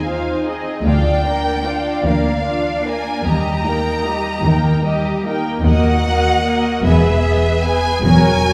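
A wet scoring-stage reverb, heard from further back in the room, surrounds this tender, lyrical fragment of a slow romantic movement for string orchestra in Eb major, moving in a rubato 6/8 at about 50 BPM by the dotted quarter. An expressive, vibrato-laden violin section carries the melody high above a smooth, distant second violin line, while lush violas fill in the accompaniment. Cellos sit in the background and a softly vibrating double bass section anchors the bass as the harmony drifts from Fm7/Eb through Bb/D and Eb to D#m and finally E.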